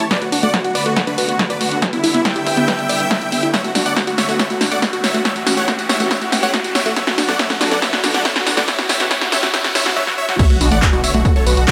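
This bittersweet, soaring uplifting trance cut at 140 BPM in B minor opens mid-build-up with a huge, euphoric detuned supersaw lead carrying the melody up front with tape echo, bright bowed studio strings holding sustained chords and a detuned unison pluck spinning arpeggios in the background, all three pumping against the sidechain, while a punchy analog drum machine with crash, handclaps, hi-hat, snare and tambourine plays fills over a layered electronic kick, a very quiet riser and sub drop, and a filter sweep, until the drop and impact hit at 10.4 seconds and a gritty, nasal, saturated synth bass joins at 10.6 seconds, the whole mix set in a lush hall reverb.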